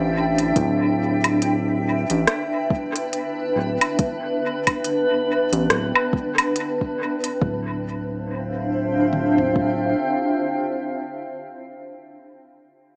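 A granular cloud pad and a round analog bass open this meditative, deep ambient dub excerpt together. The pad holds sustained chords in D dorian, moving from Dm11 to G6/D and back, with a blurred, evolving, mellow quality. Beneath it the bass sits low and dark, with a fast attack and a filter sweep. At 70 BPM in a swung 4/4, an organic electronic drum kit brings crisp hi-hat, rim click and woodblock, which carry dub echo and drop out at 7.4 seconds. The soft kick and toms continue until just before the bass ends at 9.9 seconds, leaving the pad alone until 11.6 seconds. The mix is echo-heavy with a small speaker sound, set in a moderate echo-chamber reverb.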